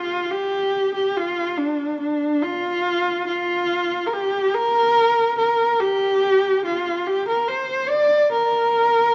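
A moderate reverb, like that of a scoring stage with a decay of about 2.1 seconds, surrounds this brief 9.1-second fragment of Mongolian traditional music, which is cut from a longer piece. A single horsehead fiddle plays alone throughout, its bowed horsehair strings giving a husky, rich tone that sits up front yet carries a distant quality. The player shapes the line with vibrato and portamento, keeping the sound focused within a range from D4 to D5. The mood is vast and galloping, set in a straight four-beat metre.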